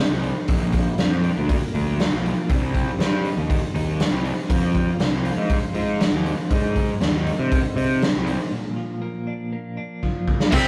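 Cathartic and angsty, this piece of quiet-loud alternative rock, cut from a longer song, moves in a straight 4/4 through Bb, Cm, Fm, Ab and back to Bb. A clean, twangy twelve-string electric guitar picks tremolo-treated arpeggios in the background, while an overdriven fuzz bass sits up front with a warm, amped growl. A raw garage drum kit, also up front, brings a punchy kick, a medium-tuned snare, hi-hat and crash cymbal, its gritty tone set in a stone room with a rolled-off top. A break begins at 8.5 seconds, and a drum fill at 10.0 seconds pushes toward the loud half. At 10.5 seconds a dark octave-fuzz lead guitar takes the melody as a tight distorted guitar and a high-gain distorted guitar, the latter further back, crash in on a riff. The whole take has the rough, saturated feel of a rehearsal room, with little reverb.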